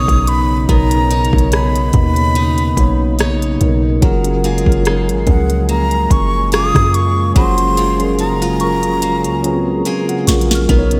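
A breathy jazz flute opens this romantic, dreamy contemporary R&B excerpt with an expressive, vibrato-laced melody, trailed by a diffuse ambient delay. It is joined from the start by a mellow tine electric piano, a detuned sawtooth analog pad with a subtle warbling chorus, a bright, boxy parlour acoustic guitar picking arpeggios, and a deep, boomy 808-style bass. The smooth R&B drum kit enters at 0.1 seconds at a relaxed 72 BPM with a light 16th-note swing, its soft kick, sharp snare, rim click and smooth hats giving an electronic, produced feel. The harmony moves from Bmaj9 to F#maj9 at 4.0 seconds, where a soft, pure FM synth bell appears in the background, colored by chorus, phaser and delay. A drum fill begins at 7.4 seconds, and the electric piano adds a fill of its own near the end of the passage. Everything sits in a lush hall reverb that leaves the mix soaked and dreamy.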